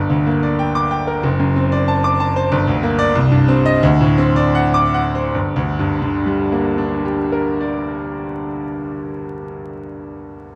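A bright grand piano carries this brief classical virtuoso study alone, its brilliant, smooth tone sitting up front with long sustain and a vintage character. Cast in G minor and in 2/4, the music moves with an agitated, passionate rubato, its tempo drifting between 72 and 97 BPM and slowing down from 1.9 to 5.3 seconds. The harmony circles from G minor through D7 with F sharp in the bass, touches C minor, and returns home to G minor as a new section begins at 5.3 seconds. The piano ranges from F#1 up to D6. The recording blends a moderate scoring-stage reverb with a dark production and vinyl crackle, and the passage, cut from a longer piece, ends at 10.6 seconds.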